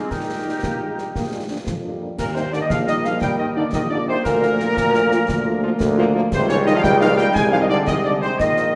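In a straight 6/8 lilt at 116 BPM, counted in dotted quarters, this spirited, rousing military-style march for wind band moves in Eb major through a brief passage cut from a longer piece. A dark, tight trumpet section carries the melody with light vibrato and a distant, roomy presence. A clear solo euphonium, a pure, expressive flute section and a mellow woodwind section weave second lines around it. The trombone section holds sustained chords in the background while a tuba anchors the bass with vibrato, and a very quiet French horn section adds accompaniment from 0.3 seconds. Concert snare drum, clash cymbals with a dark tone and concert bass drum sit close and dry against the otherwise reverberant scoring stage. After a short opening section, a second section begins at 2.2 seconds on Eb, and the harmony moves through Bb/D and Eb7/Db to Ab/C.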